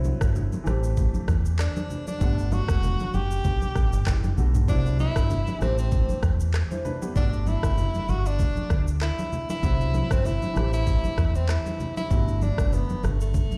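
Afrobeats at 97 BPM in G major, this sunny, breezy cut from a longer piece rides a gently swung sixteenth-note feel in 4/4, cycling through Cmaj9#11, Am7 and Gmaj9. An electronic, produced afro-pop drum kit sits up front with a deep, tape-warm kick, handclaps, rim clicks, shaker and toms, while ringing, medium-tuned congas played with soft hands sit in the background with a small-room character. A dark, round and punchy fingered electric bass, direct and amped, anchors the low end up front, with a smooth, vintage grand piano filling in the chords beneath. At 1.6 seconds a breathy tenor saxophone enters as the jazz-style solo voice, clear and present, with vibrato, subtone and scooped notes, trailed by a digital delay. The mix carries little reverb overall, with a big sound-system-in-a-bare-room feel and a large studio reverb around it.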